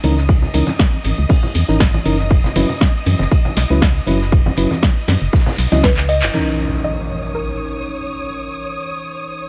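A late-night deep house groove at 119 BPM opens on mellow, round FM electric piano stabs with chorus and dub echo, a hollow organ-like FM bass, a muffled, cloth-damped acoustic kit and soft-handed congas set back in the mix, a punchy analog drum machine with handclaps, and a lush, vibrato-rich violin section, all moving over C#m69 and F#7sus4 chords in C# dorian with a gentle 16th-note swing. A tape-warm electronic kick sits up front from 0.3 seconds, and sidechain pumping breathes through the keys, bass, strings and the kit's cymbals and hats. A soft, wave-folded pluck with 12-bit sampler grit and digital delay enters at 5.8 seconds to carry a brief melody. After a drum fill and band accent, the rhythm section drops at 6.3 seconds as an electronic impact hits, and the pluck continues above the lingering piano and strings.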